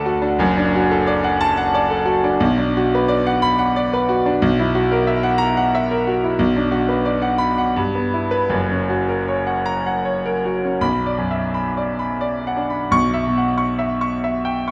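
A clear, up-front grand piano opens this brooding, passionate romantic character piece in B minor, played solo in a flexible rubato 3/4 that drifts between 76 and 93 BPM. Its smooth, vintage tone and long sustain bloom into a wet recital-hall reverb as the harmony moves from D/F# through B minor and F#7/B toward F#, before a new section begins at 10.8 seconds and settles on C#m7b5/B. Spanning F#1 to C#6, the passage is cut from a longer work and ends at 14.7 seconds.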